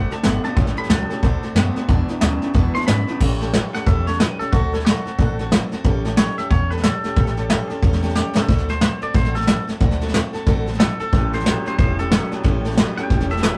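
Rockabilly at 182 BPM with an upbeat, rowdy swing in A mixolydian: a clean, compressed twangy electric guitar carries the melody and takes a solo from 3.2 s, a boxy parlour-style picked steel-string acoustic guitar accompanies with fresh-stringed sparkle, a slightly broken-up, lo-fi electric guitar through a small old amp plays a low riff that drops out at 3.2 s and returns at 11.1 s, a woody, thumpy pizzicato upright bass anchors the low end, and a soft, up-front brush drum kit with a punchy kick adds a brief fill, all in a rough rehearsal-room recording with short booth ambience and a dulled top end, cut from a longer piece.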